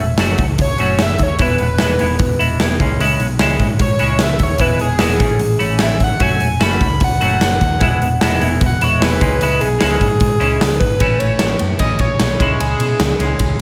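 A screaming, gritty synth lead with a sawtooth bite, vibrato and slapback echo carries the melody as a solo through the first 11.0 seconds of this upbeat yet wistful indie rock cut at 150 BPM, moving over chords such as F#m7, E, C#m and Amaj7. Beneath it, a biting overdriven guitar with analog chorus and a lo-fi garage guitar tucked in the background drive riffs, while a dark, round hollow-body bass anchors the low end. An up-front big rock kit with a punchy kick and bright cymbals fills a recital-hall reverb for a big arena sound, and the piece shifts to A and C#m near the end.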